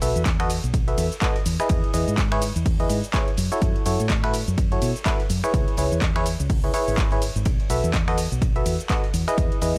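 A small room ambience surrounds this soulful, energetic piano house excerpt at 125 BPM, swung on the 16ths, with chords moving from B7sus4 through Emaj7, F#m7 and C#m7. A biting, percussive FM electric piano sits up front with chorus, digital delay and sidechain pumping on its riff, over a foam-muted fingered electric bass that also pumps. An overdriven analog drum machine of finger snaps, handclaps, hi-hat and shaker plays throughout, joined from 0.3 to 9.5 seconds by a punchy, tape-warm electronic kick, while a high-passed studio kit of hi-hat, ride and snare pumps in the background.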